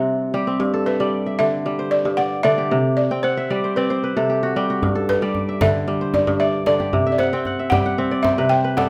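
Flowing and joyful, this short cut from a longer piece of West African string and xylophone music moves at 114 BPM in a straight 4/4 in G major: a crisp, ringing, fingerpicked kora sits up front spinning arpeggios and adding fills at 3.1 and 7.1 seconds, a woody, buzzing balafon played with soft rubber mallets carries the melody with a close, dry, full sound, and a deep acoustic djembe joins at 4.8 seconds, the ensemble heard within a moderate recital-hall reverb.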